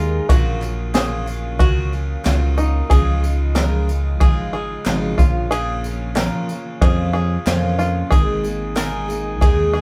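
A vintage brush drum kit sits up front in this hopeful, anthemic indie folk passage, its punchy kick, high-tuned snare and ride cymbal softened by brushes and a rolled-off top. A growly, punchy picked electric bass sits close beside it, while a jumbo twelve-string acoustic guitar adds a full-bodied, shimmering, octave-doubled accompaniment with audible finger squeak. A twangy, percussive bluegrass banjo, played with fingerpicks, runs arpeggios in a narrow upper range, and a distant, mellow brass ensemble holds very quiet sustained chords with light vibrato. A jingly tambourine in the background and a crisp, close group handclap, very quiet in the mix, join the drums at 0.3 and 0.6 seconds, adding to the building, live-in-one-room feel under light reverb. The harmony moves through Gbmaj7/Bb, Dbadd9, Bbm and Absus2 in this short, steady straight-feel excerpt.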